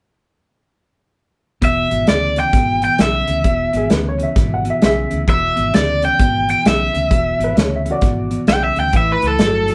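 Recorded live by a band in one small room with moderate reverb, this rollicking, laid-back electric blues shuffle in E mixolydian swings at 131 BPM, as a bright, overdriven garage guitar carries the melody up front over a clean, compressed electric guitar riff, a dark, foam-muted fingered bass and a punchy acoustic country drum kit of hi-hat, kick and snare, all from 1.6 seconds, while a worn, woody, slightly detuned upright piano adds a second line from 3.8 to 8.4 seconds, and the chords move from E7 to A7 at 8.9 seconds in this cut from a longer piece.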